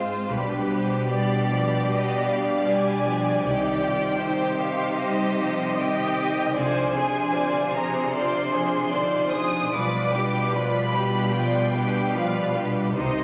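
Wet scoring-stage reverb and vinyl crackle surround this yearning, elegiac slow romantic orchestral passage in a rubato 4/4, where a lush, up-front con sordino violin melody entering at 0.7 seconds carries vibrato over a veiled second violin line, dark muted violas in the background, mellow, punchy French horn chords, and a bass of distant cellos joined at 0.3 seconds by soft-attack double basses.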